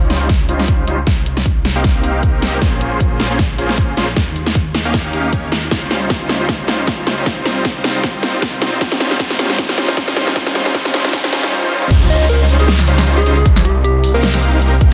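Bright and lush, this future bass excerpt moves at 155 BPM in a swung half-time 4/4 in Db lydian. Huge, detuned supersaw chords pump against the sidechain with dub echo and a filter sweep through the build-up, cycling through chords like Dbmaj9#11, Cm7, Bbm9 and Eb7 over a thick, saturated saw bass. A punchy layered kick and a dubstep kit with a huge snare, hats, toms and crash fill beneath very quiet risers and sweeps from 9.1 seconds, until the drop at 11.9 seconds, shortly after which a round, warbling FM lead with tremolo and echo enters.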